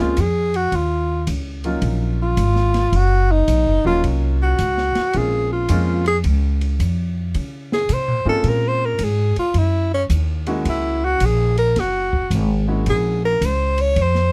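Late-night and cool, this small-group swing and bop excerpt features a breathy tenor saxophone soloing up front with vibrato and scooped notes over a baby grand piano that comps until 13.4 seconds, a woody pizzicato upright bass, and a dark drum kit with a punchy kick and dark cymbals, all caught by close, detailed microphones in a dry room as the harmony moves from Bbm7 through Ebm7 to Gb7.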